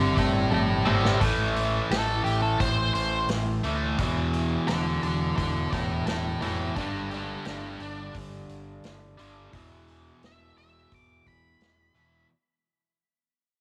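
Blues rock in the power-trio mold, with a southern rock streak, this short, smoky and heavy passage moves at 86 BPM in a straight 4/4 and fades out across its full 12.3 seconds. An octave-fuzz lead guitar carries the melody up front, its dark, distorted tone trailed by tape echo, while a cranked stack guitar, bright and double-tracked, drives the riff with overdrive in the lower register. An overdriven fingered electric bass sits underneath with an amped, warm body. A vintage drum kit enters at 0.2 seconds with hi-hat, kick, snare and toms, its tight kick and medium-tuned snare mid-forward with a rolled-off top, and a drum fill lands between 0.5 and 1.2 seconds. The harmony opens on C/G before moving through A5, E5, G5 and back to E5, all set in light reverb and studio ambience.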